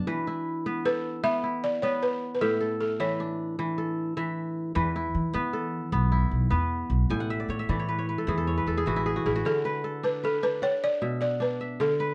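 West African traditional music in 12/8, flowing and warm, where a bright, ringing fingerpicked kora spins arpeggios throughout and adds a fill before the second section, a woody, buzzing balafon played with soft rubber mallets carries the up-front melody with a slapback echo before dropping out and returning at 9.3 seconds, and a growly pizzicato upright bass joins from 4.8 to 9.4 seconds, within a dark production with moderate studio reverb.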